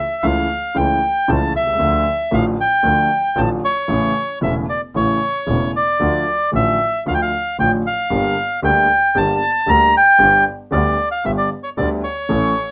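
In a moderately reverberant studio, this tense, passionate tango fragment in D harmonic minor moves with a rubato feel at 114 BPM, as an up-front, reedy bandoneon carries the melody over an intimate, vintage-sounding concert grand piano with audible action noise, deep bass and long sustain, while a single bowed double bass adds a clear, smooth, even line with vibrato.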